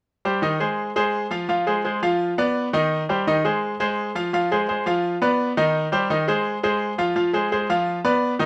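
A straight, driving 4/4 at 169 BPM carries this passionate Latin fragment from a longer piece, where a solo bright grand piano, brilliant and up front with a polished, short-sustained tone, spans Eb3 to F5 over a repeating Cm, Fm and Bdim cycle from 0.2 to 8.5 seconds, set in a moderate large-studio reverb.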